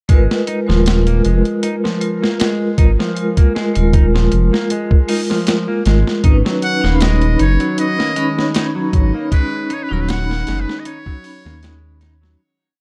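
A melancholic, dark trip hop groove opens at once with a gritty, pitched-down boom bap kit, its thumpy kick and high-tuned snare carved from a compressed, looped breakbeat with edits, sitting up front beside a deep, rumbling detuned saw bass that carries a dub-style line. A vibraphone struck with hard mallets rings out metallic held chords in spread voicing with syncopated pushes, its fast motor vibrato and tremolo colouring a boxy small room. Alongside it, a clean, hollow-toned semi-hollow electric guitar picks a 6-step arpeggio loop that drifts against the bar, lightly chorused and trailed by tape echo. At 6.2 seconds the harmony shifts and a vintage string machine cello pad slides in far in the background, full and phased with ensemble chorus and a slow attack. From 6.6 seconds a buzzy, thin trumpet with a metal mute wanders through a free, jazz-style solo line with light vibrato, soft attack, sampler grit and tape echo, while the dry, dark production fades out from 8.3 seconds to the close.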